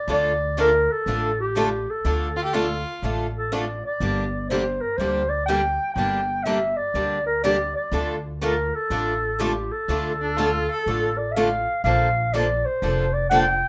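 Acoustic string swing in D minor at 122 BPM, this swinging, virtuosic excerpt features a breathy, dark-toned clarinet with subtone, vibrato and scooped notes leading the melody up front, while two bright picked steel-string acoustic guitars, one boxy with finger squeak, and a woody, thumpy pizzicato upright bass drive the accompaniment, and a biting, earthy bowed violin adds brief second-line phrases at 2.4 and 10.2 seconds, all set in a moderate club reverb.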